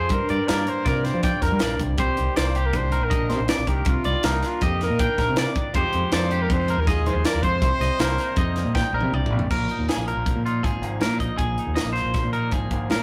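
A growling, overdriven fingered electric bass sits up front in this intricate, restless math rock and midwest emo excerpt, set in 5/4 at 160 BPM in C minor. A crisp fusion drum kit with a high-tuned snare and punchy kick comes in just after the start. Two twangy, clean, picked electric guitars fill out the harmony: one plays accompaniment up front, while the other plays compressed arpeggios in the background through spring reverb. A close-miked trumpet with light vibrato carries the pop-style melody and drops out at 9.1 seconds. A drum fill beginning at 8.7 seconds leads into a new section at 9.5 seconds, where the harmony shifts from Gm7, Cm9, Fm9 and Cm7 to a suspended Bb7sus4. The whole excerpt has the rough feel of a rehearsal room, with moderate small-room reverb and a warm, saturated grit.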